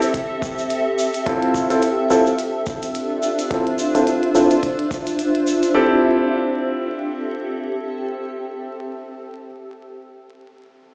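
Glitch hop at 107 BPM in A minor, this short cut from a longer piece has a playful, swaggering feel, with a 57% swing on the sixteenths giving the groove its lilt. A clicky, tape-warm electronic hi-hat sits in the background alongside a grainy, bright tube shaker, while a gritty, pitched-down sampler-style kick thumps from 0.1 to 5.0 seconds, its compressed body re-recorded in a large room. Up front, a cloudy granular pad with a slow attack and long release blurs from the start until 8.8 seconds, pumping against the sidechain and carrying its own reverb. From 1.3 seconds a clear, smooth concert grand piano plays vintage-toned stabs with deep bass weight, run through a low-pass filter with a sweep, tape echo and sidechain pumping. The harmony moves from Am7 to Dm9 and back to Am7 at 5.7 seconds, where the beat drops away and the pad and piano carry on. A wet plate reverb, vinyl crackle and a small-speaker character color the mix, as if played on a big system in a bare room.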